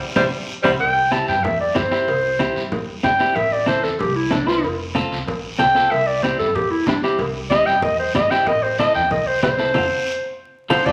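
Cumbia at 188 BPM in C major, sunny and festive, where an opening drum fill and band accent give way at 0.8 seconds to a mellow, smooth-topped clarinet solo up front, carried over a clean, compressed fingered electric guitar, a woody pizzicato upright bass, raspy close guiro, damped low-tuned congas and ringing, saturated timbales and cowbell in the background, with a bright vibrato tenor saxophone touching in briefly, a guitar fill from 10.1 seconds, and the whole cut from a longer piece bathed in large studio reverb and vinyl crackle.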